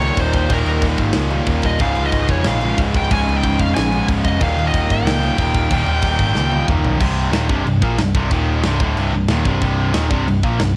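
This heavy, epic metal clip has the dry, homemade sound of a cassette recording, with tape grit on the guitars and drums. Three guitars carry the weight: a tight, double-tracked distorted rhythm guitar sits up front, a thick, fuzzy double-tracked guitar fills the background, and a dark, high-gain lead plays the melody until 6.7 seconds. Beneath them, an overdriven picked electric bass growls with punch. A polished, airy acoustic kit with bright cymbals, a medium-tuned snare and a punchy kick plays in half time through the opening, with Eb and Db chords underneath. A drum fill at 6.4 seconds leads into a new section at 7.0 seconds, where the harmony turns to C minor.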